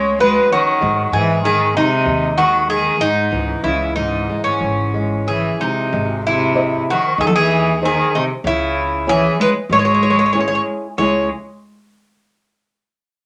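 A wet studio reverb gives this passionate, longing fado-style ballad in C# minor a sense of space as it drifts at a rubato 95 BPM in 4/4, cut from a longer piece. Up front, a bright, metallic Greek bouzouki carries the melody with picked double strings, some doubled at the octave, while a single bowed cello adds a biting, nasal second line, with light vibrato and an airy bow. Beneath them, a dark, fingerpicked nylon-string guitar gives small-sounding accompaniment, and a growly, thumpy pizzicato upright bass anchors the chords, which move from F#sus2 through G# to C#m and back to G# at 5.9 seconds.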